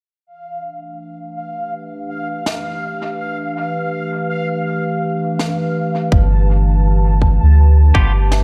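Ambient dub at 82 BPM in G mixolydian, hazy and spacious, where a warbling, nostalgic, lo-fi tape-like pad fades in on sustained chords beside a bubbling, resonant stepped-filter texture, a brushed snare with dub echo enters at 2.5 seconds, a deep, round sub bass and a tight, overdriven electronic kick arrive up front at 6.1 seconds as the chords settle from G7 to G, and a bright, twangy clean electric guitar adds a brief spring-reverbed stab at 7.9 seconds.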